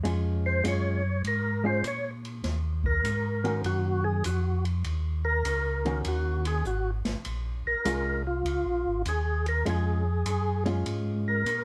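Light reverb gives this short cut from a longer soul jazz organ trio a bluesy, late-night air, swinging at 100 BPM in 4/4 in Bb minor over Bbm7 and Ebm7. A round, mellow tonewheel organ carries the bass up front through chorus vibrato and a slow rotary speaker, while a clean, compressed hollow-body guitar plays the accompaniment and an acoustic drum kit, with boomy kick and dark cymbals in a small room, sits quietly underneath. From 0.5 seconds a fat, lightly overdriven second organ takes the melody as a solo, its percussive second-harmonic attack and key click standing out through its own chorus vibrato and slow rotary.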